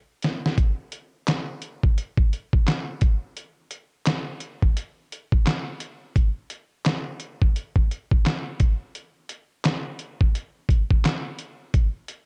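A dark, dry production frames this mellow, dreamy hip hop excerpt, where a dusty soul sampler-style drum kit sits up front with a thumpy kick, fat snare, hi-hat and handclaps, its gritty 12-bit overdrive and small-room character carrying a swung sixteenth-note feel after a brief opening drum fill.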